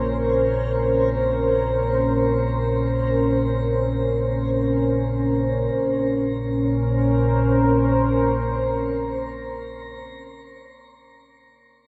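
A deep, moody pad carries this dark, unsettling ambient piece in free time, holding sustained chords in B-flat minor from a detuned sawtooth and sine blend with a sub octave, chorus-warbled into a vintage character and bathed in shimmer reverb. Beneath it, an ominous rumbling drone built from triangle and sawtooth tones sits low and up front, with a slow attack and long release. A reversed, granular triangle texture hovers very quietly in the background with a dreamy, soft-edged quality until about 5.8 s, while the drone ends near 9.9 s and the pad lingers to 10.3 s. The harmony rests on a single Bbmadd9 chord, and the piece shifts into a new section at 5.7 s. A wet plate reverb with a three-second tail surrounds the mix, giving this fragment of a longer work a cavernous, brooding atmosphere.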